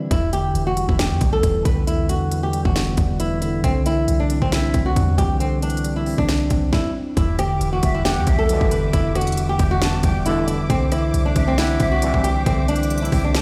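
A dark, fingerpicked flamenco guitar carries the melody up front with tape echo, over a mellow tine electric piano heard through its built-in speakers, a deep, boomy 808-style bass and a hard-hitting trap kit of hard-clipped kicks, sharp snares, crisp hats and rim clicks, in a melancholic half-time groove at 136 BPM in E minor, moving between Em7 and Cadd9. After a brief stop at 6.7 seconds, lush bowed symphonic strings enter at 7.2 seconds, with a breathy jazz flute adding a second line through tape echo in the background shortly after and tight, clear brass stabs joining at 8.5 seconds. This excerpt of a longer piece sounds as if played on a big sound system in a bare room with stone reverb.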